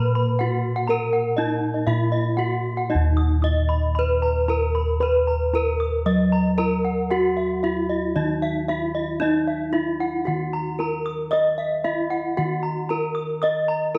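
Mellow, round-toned bossed gongs struck with padded beaters sit up front with a beating bronze bass in this hypnotic, brilliant Balinese gamelan excerpt in 4/4, joined throughout by a bright, horn-mallet metallophone carrying the melody with shimmering beats from its paired tuning and a second, airy metallophone ringing out higher arpeggios, the ensemble set in a moderate recital-hall reverb with a dark production as the opening passage gives way to a new section at 2.9 s.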